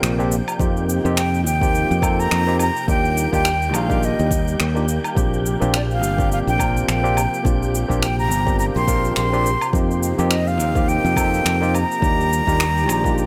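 A breathy concert flute carries the melody in this sunny, blissful sunset chillout excerpt, played with a straight tone and soft attack, close-miked and trailed by tape echo. Beneath it, a barky tine electric piano, also touched by tape echo, plays the accompaniment, while a lush, detuned sawtooth unison pad with chorus sustains very quiet, warbling chords. A growly, punchy fingered electric bass sits up front, and overdriven electronic finger snaps, cabasa and woodblock, re-recorded in a small room, play from the start, joined at 0.6 s by an electronic kick drum. A dark, wind-like tuned noise texture hovers in the background with its own reverb. At 105 BPM in 4/4 with a gentle sixteenth-note swing, the Bb major harmony moves through Bb69, F9sus4 and Ebmaj7 under light reverb across the 13.3-second clip.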